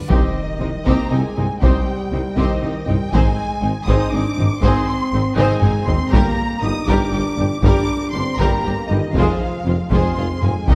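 In a straight 6/8 pulse at 79 BPM, this dramatic, heroic C minor film-score excerpt opens with a huge, bright reverse cymbal and impact in the background, then sets heavy-stick taiko drums, which lead the mix and fill from 5.4 to 6.1 seconds, under lush bowed violins carrying a vibrato melody and a smooth second line, intense violas, a close but very quiet cello section, expressive double basses, a tight, mellow French horn section holding chords and a very quiet tuba, all moving through Cm, Ab, Gm and Fm in a dark production with moderate scoring-stage reverb.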